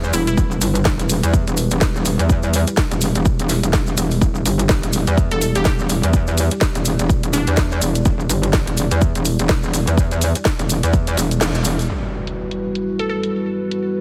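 Swaggering and bouncy, this swung bass house excerpt rides a metallic, saturated wobble bass and a punchy, up-front electronic kick over a cracking house kit, grainy maracas and a dark, moody analog pad pumping in the background, while a glassy wavetable pluck with 12-bit grit and delay flickers in and out; the kick drops out at 11.4 seconds and an electronic impact lands at 11.9 seconds, all under a heavily compressed radio-style sheen.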